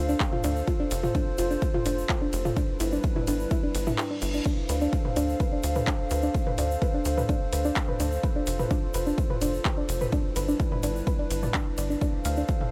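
A dry cut from a longer melodic techno track in D dorian drives along at 127 BPM in a dark, moody mood: a heavy electronic kick sits up front beside a punchy sawtooth sequencer bass, while a detuned, nasal analog pad with chorus sustains Dm7, F and G6 chords, a soft, round pluck spins chorused arpeggios through tape echo, and all three pump with the sidechain, as do the techno kit's metallic hats, crash and ride cymbals and toms, with handclaps alongside and a grainy, distant egg shaker in the background; at 3.8 seconds a reverse cymbal rises and the kick briefly drops out from 4.0 to 4.5 seconds.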